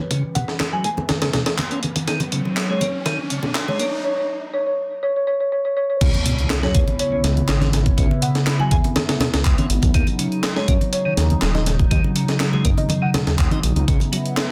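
A gritty, pitched-up sampler breakbeat kit with a thumpy kick and high-tuned snare drives this energetic, funky breakbeat excerpt, layered with a house kit's handclaps and hi-hat, bright saturated congas, a piping, key-clicking tonewheel organ riff, a swirling phased analog pad, a woody soft-mallet marimba melody with an AM-radio tint, and an electronic riser that builds during the filter sweep ahead of the impact and drop at 6.0 s, where a deep, rumbling detuned saw bass enters.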